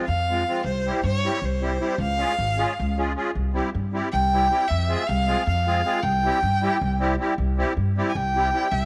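The reedy, shimmering musette accordion sounds first at 0.0 seconds, and the clear violin and upright bass join almost at once in this bittersweet, fiery Balkan wedding-band piece in 7/8. The bowed violin carries the lead for the whole passage, a single player with focused tone and vibrato, placed up front though it also carries a faintly distant quality. Beneath it, the accordion's musette tuning gives the accompaniment its characteristic beating shimmer. The pizzicato upright bass is woody, growly, thumpy and dark, strung with steel strings. The harmony circles from F minor through C and D-flat and back, and a light reverb lends the trio a small-room ambience until the cut at 8.9 seconds, lifted from a longer piece.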